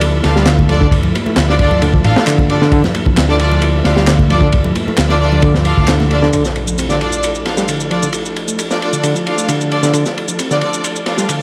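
Vinyl crackle sits over this raw, funky breakbeat excerpt, where a crunchy, punchy drum kit with a high-tuned snare and dark cymbals drives up front, joined by layered electronic handclaps and shaker and by hard-hand congas and bongos ringing in the background. A round, hollow-body picked electric bass and the percussion drop out near 6.3 seconds, when an electronic impact hits and a filter sweep moves from the reedy, tremolo-laden electric piano riff to the background tonewheel organ's sustained chords, which carry fast rotary swirl, chorus vibrato, sampler grit and sidechain pumping. Throughout, a rich bowed string section adds smooth stabs trailed by tape echo.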